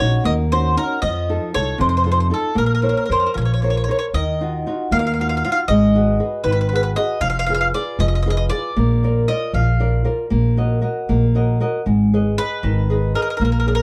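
Italian folk serenade in a straight 6/8 at 78 BPM, passionate and romantic, where a bright, picked bowl-back mandolin with doubled strings sings the melody over fingerpicked nylon-string guitar and a woody pizzicato upright bass, all three up front in a dark production with light reverb and a plate on the mandolin, moving from Bb harmonic minor to Eb harmonic minor at 4.1 s through chords such as Ebm7, F7, Fdim and Abm in this short cut from a longer piece.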